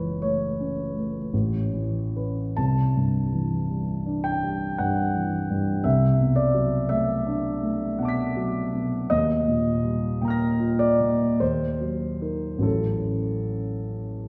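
A single grand piano opens this dreamy, hazy impressionist classical excerpt, its tone warm and natural and placed up front in the mix. The pulse sits in a slow 3/4, between 46 and 57 BPM, and is played with a flexible rubato feel. The piano spans a broad register from F#1 up to B6, moving through rich, colourful harmonies such as F#m7, Aadd9, C69 and E11/C. Around 9.1 seconds the harmony shifts to D#add9 and D#m6 before settling on A6 at 12.6 seconds. A wet concert hall reverb surrounds the instrument, and the listener seems to sit further back in the room, which adds to the hazy atmosphere across its 14.3 seconds.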